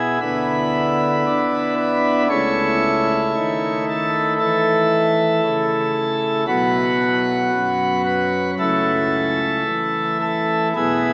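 Slow and rubato at 57 BPM in 4/4, this serene, majestic classical chorale excerpt features a solo pipe organ's full principal chorus in baroque voicing, up front and spanning B1 to C#5, moving through E5/D, A/C#, B5 and back to A/C# inside a wet cathedral reverb with a 4.5-second decay, all heard through a small-speaker sound and tuned to A4 = 441 Hz.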